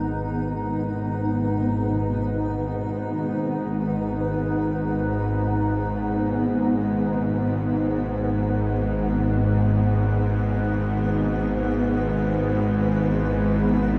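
Free-floating and unmetered, this dark ambient drone drifts through a cavernous 14 seconds cut from a longer piece. Low in register, a bowed-like drone sits up front, its string-like, tense sawtooth tone thickened by detuned unison, a noise layer and ring modulation, with slow attacks, long releases and a touch of vibrato. Above it, a granular cloud pad holds sustained chords in a blurred, evolving haze, wave-folded yet mellow and also up front, its built-in reverb crowned by a shimmer reverb. A quartz singing bowl, struck with a wooden striker, rings pure and meditative with slow beating, though it remains barely audible beneath the other layers. The harmony rests on G#m before shifting to E/G# at 10.7 seconds. An enormous reverb with an 8.3-second decay places it all in a vast, echoing space.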